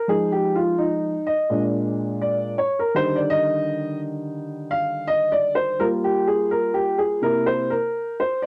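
Hip hop with a cool, nocturnal mood, this short passage is carried entirely by a dark upright piano playing alone from 0.0 to 8.5 seconds. The piano sits up front with a mellow, woody character and long sustain, spanning from Bb2 to F5. A swung sixteenth-note feel in 4/4 shapes the rhythm, and the tuning sits slightly below standard pitch. The harmony moves through Fm7, Bb7#9, Ebmaj7, Gm7 and C7, lending a jazzy colour. Light reverb and the home cassette recording add a lo-fi intimacy to this fragment cut from a longer piece.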